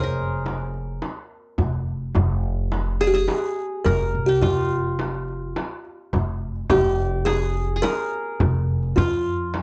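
A straight 4/4 pulse at 106 BPM drives this short cut from a longer Turkish makam ensemble piece in F makam ussak, its mood longing and hypnotic. A buzzing kalimba carries the melody between F4 and Bb4, its thumbnail-plucked tone woody, dark and smooth, with short notes from a solid board. Alongside it a qanun, played with fingerpicks on triple strings, adds a bright-edged second line reaching from F4 to Eb5. The pizzicato upright bass sits up front on steel strings, warm and woody between F1 and F2, while a metal-shelled darbuka sounds crisp and deep from a distant, large room. A close frame drum played with soft hands joins at 0.5 seconds, and the opening section gives way to a new one at 6.7 seconds, all within a dry, 1970s-style studio sound.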